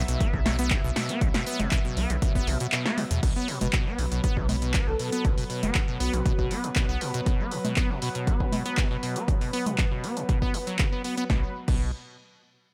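A dry, up-front mix carries this hypnotic, trippy acid house excerpt at 119 BPM in a straight 4/4, where a punchy electronic kick and an overdriven analog drum machine of congas, crash, handclaps, hi-hat and snare drive alongside a squelchy, resonant sawtooth acid bass riff with chorus and delay. A round, deep analog bass with tube saturation and a smooth, detuned pad of sustained chords with chorus and tremolo both pump with the kick, and the kick briefly drops out at 2.7 seconds. At 4.9 seconds a soft, breathy flute-like lead with vibrato and tape echo drifts in the background, and the round bass falls away at 7.0 seconds before returning near the end.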